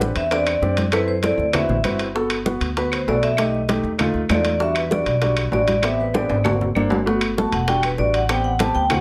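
A moderate studio reverb frames this lively, sunny Afro-Cuban jazz excerpt at 195 BPM in G major, where an intimate, up-front grand piano with audible action noise comps through rich chords such as Am11, B7alt and Gmaj9 over a thumpy, woody pizzicato upright bass, ringing close-miked congas, tight high-tuned bongos in the background, metal-shell timbales in a live room and compressed, saturated claves, while a metallic vibraphone with fast motor vibrato, slapback echo and plate reverb carries the melody and takes a solo from 2.2 s, punctuated by a drum fill at 6.1 s.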